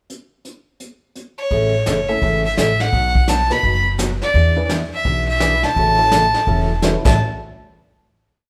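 A vintage brush drum kit opens this cheerful, swinging western swing piece in A major at 169 BPM, sweeping brushes on a medium-tuned snare with dark cymbals and a tight kick, sitting up front in a pumping small-room sound with a rolled-off top. At 1.4 s a clear, earthy fiddle takes the melody with light vibrato, bowing motif-based call phrases. It is joined by a woody pizzicato upright bass playing a two-beat root-and-fifth line with walk-ups, and by a bright, full-bodied dreadnought guitar picking four-to-the-bar rhythm with audible finger squeak. From 2.1 s a detuned, jangly upright piano adds syncopated comping in close voicings from the background as the band, playing live in one room with moderate large studio reverb, moves through A, B, E7 and A6 before a final hit.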